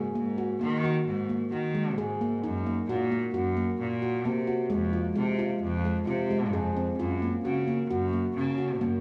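From the first moment, a handpan and a single bowed cello sound together in this restless, hypnotic piece of contemporary chamber music, cut from a longer work. The handpan plays ringing arpeggios, its nitrided steel bright and close-miked, with sharp finger strokes giving a meditative pull. Beneath it, the cello holds the bass line, earthy and biting yet with a smooth top, and both parts sit up front. The music moves at 132 BPM in an uneven 5/4 with a straight feel, set in F phrygian, as the harmony passes from Absus2 through a rootless Ebm/Gb and Fm to Gb. The players sound in a wet recital-hall reverb blended with small-room ambience, and both parts play through to the close at about 9 seconds.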